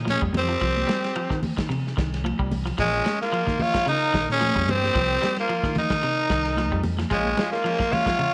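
Set in a small room with light reverb, this defiant, intense afrobeat excerpt moves at 111 BPM in Bb dorian with a gently swung sixteenth feel, as a raspy, gritty tenor saxophone carries the melody up front with vibrato while a brilliant trumpet with scooped notes plays a second line further back. Underneath, a deep, round dub bass, a dry, dark soul drum kit with a tight kick and dark cymbals, and bright, high-tuned congas drive the groove. An electric guitar at the edge of break-up picks twangy arpeggios throughout, and a clean electric guitar adds background stabs from 7.1 seconds over chords moving between Cm, Bbm7 and Cm7.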